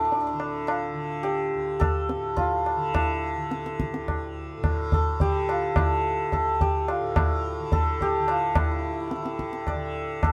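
Recorded live in one studio room with a moderate, short ambience, this short cut from a longer Hindustani classical piece feels solemn and introspective, set in raga Darbari on D at 107 BPM in a straight 5/4, tuned to A4 = 442 Hz. A bright, shimmering hammered santur carries the melody up front between A3 and D5, while a low-tuned tabla sits close alongside it from 0.1 seconds and a softly plucked tanpura holds a buzzing drone beneath. The music moves into a new section at 8.6 seconds before the cut ends at 10.3 seconds.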